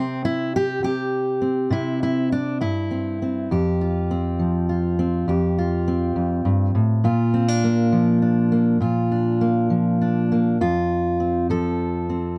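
A fingerpicked steel-string acoustic guitar plays alone from the first moment, its dreadnought body giving a dark, full-bodied tone that sits up front in a light reverb. This pastoral, hopeful folk piece in F major moves in a rubato 6/8 at around 68 BPM, with harmony passing from C to Fsus2 at 3.5 seconds, on to Bb, and settling on F5 at 10.6 seconds. The guitar ranges from F2 to C5 across this short excerpt cut from a longer piece, ending at 12.4 seconds.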